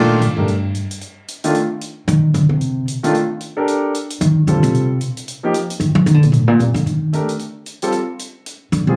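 A woody, pizzicato upright bass takes the solo up front from the first second over a clear, deep-bottomed concert grand piano comping in C dorian, with a natural acoustic hi-hat entering at 0.2 seconds, giving this hypnotic, searching modal jazz fragment a brisk 226 BPM swing in 4/4 that moves from Cm9 to Fmadd9 at 8.5 seconds, all caught on a phone in a club room with light reverb.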